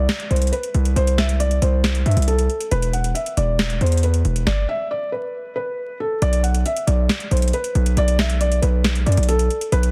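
A hard-hitting 808-style bass, punchy, saturated and up front with a noise layer over its sine body, anchors this menacing, brooding half-time trap excerpt alongside a soft, felt-muted upright piano carrying an intimate, mellow melody. A booming analog drum machine supplies a deep kick, crisp snare and metallic hats, its tape-warm tone re-recorded in a large room, while the dense, heavily limited master carries vinyl crackle and little reverb. A stop from 4.5 to 6.2 seconds gives way to a new section opening on a B minor chord.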